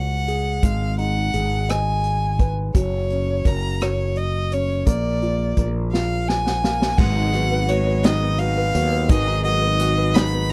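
A dry excerpt of a dramatic, aching six-eight pop ballad at 57 BPM, where a smooth, clear violin sings the melody up front with vibrato over polished grand piano chords and a growly, bright fretless electric bass; a distant, roomy acoustic drum kit played with bundle sticks enters at 0.3 seconds, adding dark cymbals, a high-tuned snare and a tight kick, and joins the piano in a fill at 5.9 seconds before a full-bodied, picked steel-string acoustic guitar with audible finger squeak adds background arpeggios from 7.0 seconds as the chords move from Dbsus4 through Abm, Gb and Bb to Abm7.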